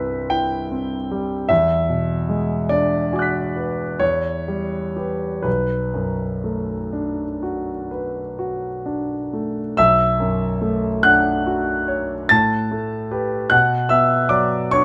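A light reverb surrounds this short passage cut from a longer piece, leaving the concert grand clear, natural and up front, with a deep bass. It is impressionist classical music for solo piano, mysterious and hazy in mood, moving freely with rubato in 9/8. The piano plays alone from the first moment to 14.8 seconds, ranging from B1 low in the bass to B6 high in the treble. Rich extended harmonies drift from Cmaj7 through E9 and Em6 to Bm7. A second statement of the opening material begins at 9.8 seconds on Bm9, passing through Asus2 before resting on Bmadd9.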